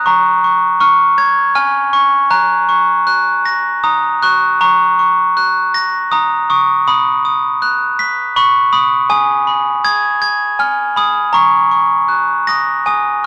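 A solo glockenspiel played with soft plastic mallets carries this tender, sleepy children's lullaby, its metallic, bell-like tone ringing up front in a light reverb. The piece sits in F# major at about 80 BPM in a gentle 3/4, with a rubato feel that lets the time breathe. The glockenspiel stays high, between G#5 and B6, and plays alone for the whole 13.3 seconds of this short cut from a longer piece. A single phrase is heard and then begins again at 4.6 seconds. The harmony moves from A#m through C# to F#, then later through B and G#m before coming home to F# at 11.3 seconds.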